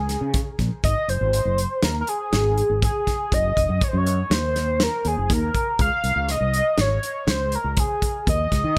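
Bright and driving, this short progressive instrumental cut from a longer piece moves in an uneven 5/4 with a straight feel. An octave-doubled lead carries the melody, its bold, retro sawtooth and triangle tones edged by ring modulation, with a fast attack and sustained notes treated with chorus, phaser and tape echo. Beneath it, a fretless electric bass sits dark and round, direct and amped, thickened by ensemble chorus. A soul drum kit of hi-hat, kick and snare sounds saturated and gritty in a tight booth with a pumping room, its medium-tuned snare and tight kick up front and its top rolled off. The harmony moves from Db5 to Ab7 at 0.8 seconds, through Gb and Dbmaj7, landing on Eb5 at 8.3 seconds, all inside a light reverb.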